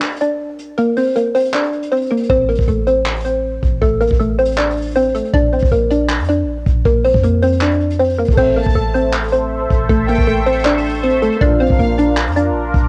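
A dusty brush drum kit with a punchy kick, dark cymbals, hi-hat, handclaps and crash opens this brooding, melancholic trap excerpt, joined almost at once by an up-front, hollow square-wave pluck carrying the melody through chorus and cassette-tape grit. The tempo sits at 158 BPM in a half-time feel in A phrygian, with the harmony rocking between Bb and Am. A clean, boomy 808-style sine bass drops in at 2.3 s, each note hitting fast and then decaying. Around 8.4 s the arrangement deepens: a very quiet, mellow grand piano adds accompaniment, an evolving, resonant sawtooth pad with ring modulation and chorus sustains chords, and a lush bowed violin section with vibrato and analog delay traces a high second line. The whole has the intimate, slightly hazy feel of a home cassette recording with studio reverb and a faint mains hum beneath it.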